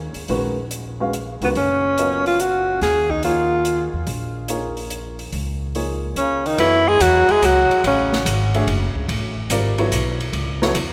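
A mellow, smooth-topped tenor saxophone carries the melody up front with vibrato, entering at 1.4 s and returning at 6.2 s, when a bright bass clarinet with scooped notes joins as a second line in the background. Beneath it, a woody pizzicato upright bass, a boxy upright piano with short sustain and an airy acoustic drum kit with dark cymbals and a boomy kick swing in 3/4, giving this modal jazz piece a searching, intense mood, with a new section arriving at 6.6 s. The recording sits in the wet cathedral reverb of a church or concert hall.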